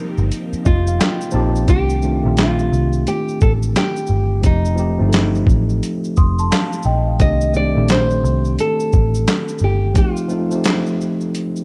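A swung sixteenth-note groove in 4/4 comes from a dusty, sampler-style kit of thumpy kick, medium-tuned snare, hi-hat, shaker and handclaps, overdriven, gritty and set up front, paired with a round, foam-muted electric bass that plays until 9.9 seconds. Over this hazy, reflective lo-fi hip hop bed, a fingerpicked nylon-string guitar with fresh strings carries the melody through a low-pass filter and analog delay. A worn, slightly out-of-tune tine electric piano plays accompaniment and an early fill, lightly overdriven and coloured by cassette tape through its built-in speakers. Sawtooth string-machine cellos with phaser and ensemble chorus sit in the background only until 1.7 seconds. At 6.2 seconds a large celesta adds a brief, bell-like second line with soft felt hammers, while the harmony drifts between F9sus4, Cm69 and F9 in a light digital ambience, in a passage cut from a longer piece.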